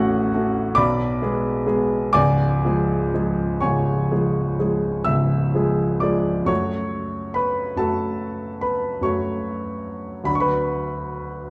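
A dark, intimate recording places a clear baby grand piano up front in a moderate recital hall, with the natural sound of its action audible beneath the notes. This excerpt from a romantic nocturne for solo piano in F# minor moves in a slow, rubato 9/8 at roughly 39-50 dotted-quarter beats per minute, its yearning, melancholic harmony passing from F#m/A through G#dim/B to C#. A new passage begins at 6.5 seconds on F#m and turns toward Bm/D, the piano spanning from deep C#1 up to F#6.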